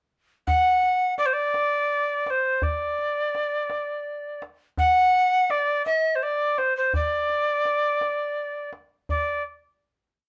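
An alto recorder leads this short Persian modal piece from 0.5 seconds, carrying a modal melody with ornaments in a woody, airy, warm tone with vibrato, a crisp attack and a hint of chiff, placed up front. Beneath it, a tombak plays a low and high stroke pattern with soft hands, its deep, acoustic sound close and dry and sitting lower in the mix than the recorder. The music moves at 56 BPM counted in dotted quarters, in a straight 6/8 feel that gives it a passionate yet stately character. Both parts play together until 9.4 seconds, and the melody stays within a narrow range from C5 to F#5. A moderate studio reverb lends a sense of space, and the piece settles onto a final note that rings until 10.3 seconds.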